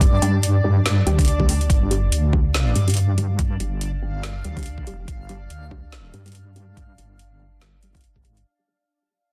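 Brooding and cavernous, this short cut from a longer deep dubstep track moves at 142 BPM with a half-time, swung feel, fading out across its full 8.5 seconds. A deep, dark wobble bass built from detuned sawtooth and sine tones sits up front with chorus, beside an overdriven, knocking electronic kick and a garage kit of woody snare and metallic hi-hats. Muted dub chord stabs enter at 0.2 seconds, soaked in phaser, lush chorus and dub echo under a filter sweep, while a reversed, dreamy granular texture swells with its own reverb, inside a dense, heavily limited modern master with a digital ambience.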